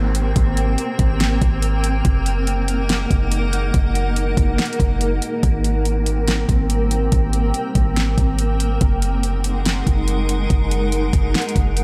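Dry and close, this dreamy, blissful stretch of atmospheric cloud-rap moves at 142 BPM in a half-time feel, where a cloudy, blurred granular pad with its own reverb and sidechain pumping sustains Abmaj9 and Gb69 chords over a deep, boomy 808-style bass and an up-front smooth R&B kit of knocking kick, fat snare and metallic hats that enters at 0.1 s, while an airy, breathy wind-like tuned noise texture drifts in the background and a very quiet electronic downlifter sounds for the first 2.0 seconds.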